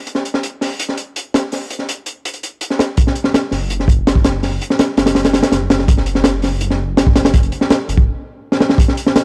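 A crunchy breakbeat drum kit leads this drum and bass and jungle excerpt at 165 BPM, its high-tuned snare, punchy kick and hi-hat sounding gritty and dark, with a rolled-off top and a small-room feel sitting up front in the mix. The mood is frenetic yet atmospheric, driven by the straight 4/4 breaks that run from the start until 9.2 seconds. At 3.5 seconds a detuned saw bass enters low around F#1, thick and beating with a menacing edge, its sustained tone saturated through tube warmth yet mellow underneath. The music shifts into a build-up at 3.0 seconds, then the bass drops out at 8.1 seconds as a stop arrives, and a drum fill at 8.5 seconds pushes toward what comes next. The sound is dry and gritty, with a cassette-tape character and very little reverb, cut from a longer piece.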